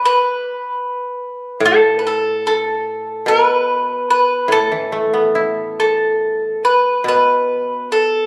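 A warm, picked bowl-back mandolin sits up front with its doubled strings, holding a melody between A4 and B4 over a dry, woody koto accompaniment played with fingerpicks, giving this meditative, still Japanese traditional fragment a loose, rubato feel, captured on a phone in a room with light club reverb and compression.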